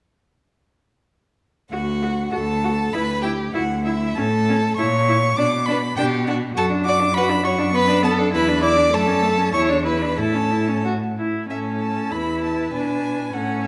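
Quick classical-period string quartet music in a cheerful, spirited 2/4 with flexible rubato, in which, from 1.7 s, a close, vibrato-rich first violin sings the smooth, even melody high above a second violin's expressive line with gliding portamento, a distant, bowed viola fills in the accompaniment, and an up-front, focused cello anchors the bass, the quartet blooming in the lush reverberation of a recital hall before shifting into a new section at 11.5 s near the close of this excerpt.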